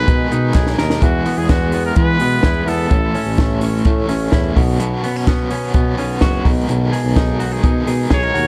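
A vintage-toned trumpet carries the melody in this breezy, youthful piece of jangly indie pop, playing from the start until 3.6 seconds with scooped notes and a digital delay, then returning briefly near the end. Beneath it, a smooth-topped tuba plays the bass line with light vibrato, while a twangy, compressed clean electric guitar, recorded direct and also touched with delay, picks out arpeggios. A crunchy overdriven guitar adds accompaniment with tube saturation and tremolo, sitting a little lower in the mix. A compact cocktail drum kit, dry and up front with a high-tuned snare and a punchy kick, keeps a straight 4/4 at 127 BPM, plays a fill just before the first second, and is joined by a hollow group handclap in the background. The chords move from G#madd9/B through E, A and Bsus2 before returning to G#madd9/B, all within a dark studio ambience in this short fragment of a longer piece.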